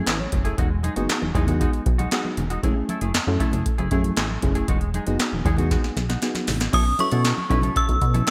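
A mellow, round FM electric piano and a clean semi-hollow guitar riff drenched in lush chorus open this slick, danceable early-eighties boogie funk excerpt at 117 BPM, riding F#m9 and Emaj9 chords over a glossy, detuned synth bass, while a booming drum machine (a deep kick, crisp gated-reverb snare, handclaps and metallic hats) and soft, very quiet congas join in. A drum fill at 5.7 seconds leads to a B9sus4 at 6.7 seconds, where a ringing, inharmonic FM bell melody enters, set within a bright digital 1980s-style production.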